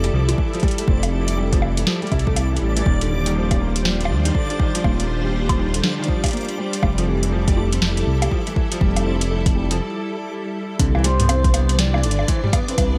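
A silky string machine holds sustained chords over felt-muted upright piano arpeggios, filtered and delayed, while a rumbling detuned saw bass, a booming analog drum machine with crisp snare, metallic hats, bongos and toms, and a dreamy reversed texture in the background open this wistful, intricate IDM excerpt in F major at 121 BPM with a 16th-note swing. A deep, tape-kissed electronic kick joins at 0.4 seconds, and after a break at 9.8 seconds the harmony moves toward Cmaj9. A velvety, detuned synth lead with chorus, vibrato, tape character and digital delay carries the melody from 11.0 seconds, all set in a light digital ambience.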